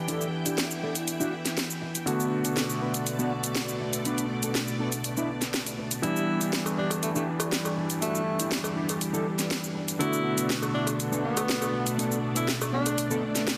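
Up front, a layered electronic house drum kit with a cracking snare, metallic hi-hats and cabasa drives this groovy, sensual nu-disco excerpt, while a lush sawtooth string machine holds sustained chords and a vintage electric grand piano with a clangy bass and tape echo fills out the Em7 and Bm7 harmony. A dark, clean electric guitar riff sits in the background, colored by chorus, a low-pass filter and tape echo. At 6.0 s a clear tenor saxophone takes the melody with vibrato and dub echo, joined at 6.7 s by a close cowbell, the whole mix set in a moderate hall reverb with a dense, heavily limited master.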